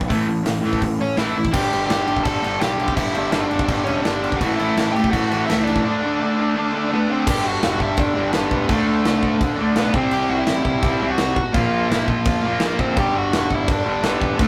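A rough rehearsal-room recording with light reverb captures this rowdy, rebellious punk rock cut at 168 BPM in a straight 4/4, where an up-front crunchy overdriven guitar and a bright distorted electric guitar further back play riffs over a growly fuzz picked electric bass and a big acoustic rock kit with punchy kick, medium-tuned snare, hi-hat and crash, while a dark, smooth overdriven lead guitar carries the melody from 1.0 seconds through chords moving from A and G5 to C and Bb5.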